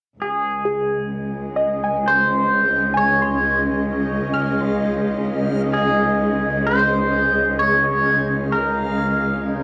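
Ambient and peaceful, this luminous 65 BPM passage in 3/4 and D-flat major is led by an up-front, twangy electric pedal steel guitar played with slide, fingerpicks and volume swells through cassette saturation and tape echo, over a bright, lush bowed cello section holding a low D-flat with vibrato, a cloudy, blurred granular pad of sustained Dbmaj7 chords entering at 1.3 s, soft round pluck arpeggios colored by chorus, 12-bit sampler grit and tape echo that drop out at 7.9 s, and a dreamy reversed swelling texture tucked in the background from 2.6 s, all captured as a home cassette recording in a wet studio reverb.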